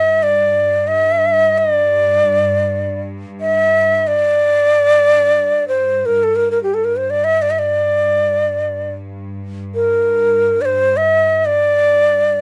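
Persian modal ensemble music with a soulful, hypnotic mood, heard in a 12.4-second excerpt from a longer piece. A breathy, bright ney sits up front and carries the melody throughout, its reedy end-blown cane tone shaded with vibrato and tongued notes. Beneath it, a symphonic cello section bows a low, floating drone on G2 with soft-attack sul tasto strokes, all in a rough home demo mix with light reverb.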